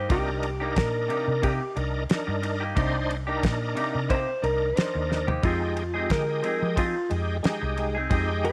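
Soul blues in C minor at 90 BPM with a soulful, smoky mood, this short cut has a dark, clean lap steel carrying a slide solo as the second line, while twangy picked electric guitar stabs and a bright, shouting tonewheel organ with slow rotary speaker, light overdrive and chorus vibrato fill in over a round, foam-muted fingered bass and a dry, damped 70s drum kit with a fat snare that drops a fill at 5.1 seconds before the move from Cm7 to Fm7, all set in a small, lightly reverberant room.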